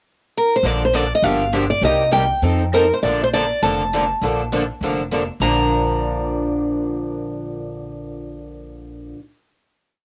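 Four-to-the-bar rhythm guitar on a picked archtop drives this brief jazz manouche piece at 201 BPM, its chords cut short and accented on two and four, while a second picked steel-string guitar adds a warm, squeaky rhythm part beneath it. An upright bass with gut strings plays a dark, woody, thumpy two-beat root-and-fifth line. A bright steel-string guitar with fresh strings enters at 0.4 s with the pickup and carries a motif-based melody in sentence-like phrases, sitting up front in the mix. The swinging, charming tune in Bb major moves through Bbmaj7, Gm7, Cm7 and F7 before landing on a final Bb chord at 5.4 s. The three guitars carry a cassette-tape colour, and the whole home recording sits in a moderate studio reverb.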